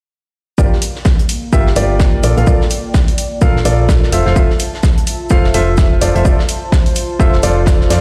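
Cut from a longer piece, this energetic, soulful, swung piano house groove opens at 0.6 s with a boxy, warm grand piano riff carrying tape echo, a low-pass filter and sidechain pumping, a punchy, round, dark FM bass under a filter sweep, an up-front analog electronic kick, and a mid-forward studio kit of shaker, medium-tuned snare and pumping high-passed hi-hat, joined by a tape-toned electronic hi-hat at 0.8 s and at 1.3 s by a warbling, nostalgic, lo-fi pad in the background with chorus, phaser and reverb, all moving through Gm7, Bbmaj7 and Fmaj7 as if played on a big sound system in a bare stone room.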